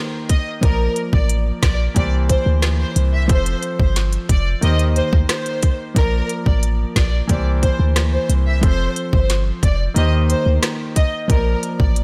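An up-front electronic drum kit with a tight kick, woody snare, smooth hats and rim clicks drives this sunny, summery dancehall excerpt at 90 BPM in Bb major, joined at 0.6 s by a deep, boomy 808-style sine bass, while a clear, intimate grand piano with audible action noise and sidechain pumping carries the Eb6, Bbmaj7, C7 and F changes beneath a dark, lush violin section whose expressive melody, rich in vibrato and portamento, floats in diffuse ambient delay inside a light small-room reverb.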